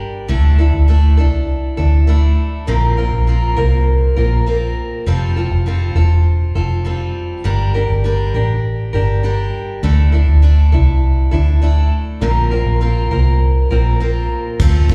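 Sunny and heartfelt, this 101 BPM acoustic pop excerpt in straight 4/4 sets a bright, freshly strung parlour steel-string guitar, picked with a slapback echo, over a dark, round, foam-muted vintage electric bass that sits up front from 0.3 seconds, moving through Dsus2, Bbadd9, Fadd9 and Gm as if heard live through the venue's PA in a recital hall, before an airy brushed drum kit with tight kick, crash and shaker arrives at 14.6 seconds just as the clip ends.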